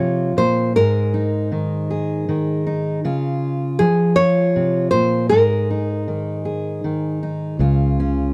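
Dry and close in a 1970s studio manner, this hopeful, nostalgic folk passage in 3/4 at 79 BPM in Db major sets a full-bodied nylon-string guitar melody, heard until 6.0 s, over a fingerpicked steel-string dreadnought with fresh strings and a touch of finger squeak moving through Db, Absus2 and Dbmaj7, before a round, growly fretless electric bass arrives up front at 7.6 s.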